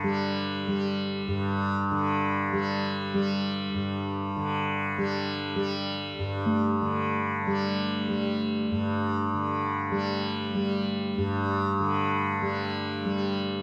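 A wet church reverb with a long 3.7-second tail surrounds this meditative, spacious excerpt of free-time world meditation music, where a softly plucked, buzzing tanpura drone shimmers up front from the start, spanning G2 to G3 in a tuning of A4 = 441 Hz, and a metallic bronze singing bowl struck with a suede striker rings on A3 in the background from 6.5 seconds, its slow beating hanging in the space.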